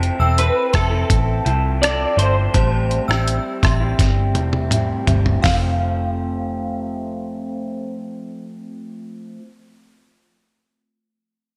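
A straight 4/4 groove from a gritty, thumpy, compressed sampler-style soul drum kit, which plays a fill before dropping out at 5.6 s, drives this sunny, hazy indie and bedroom-pop excerpt, where a dark, round, foam-muted picked bass sits up front beneath a lo-fi, slightly broken-up guitar wrapped in lush chorus and warbly pitch drift, a bright, twangy picked guitar melody with tape echo, and an inharmonic FM synth chime ringing through phaser and tape echo, as the harmony moves from Am7 to F at 5.4 s in a dreamy mix soaked in plate reverb.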